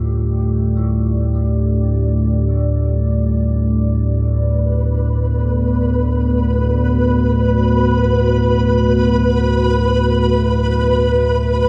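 Drenched in a huge, cavernous reverb, this unsettling dark ambient drone excerpt drifts in free time, anchored by a deep, ominous rumble sitting up front while a moody, full-bodied sawtooth pad fades in on sustained chords moving from Gsus2 to Bm at 4.2 seconds. An eerie, inharmonic FM bell fades in with mellow, chorused arpeggios in the background and a diffuse delay, playing until 6.0 seconds. From 4.6 seconds a grainy, flickering granular texture enters up front, holding a single high note until the close.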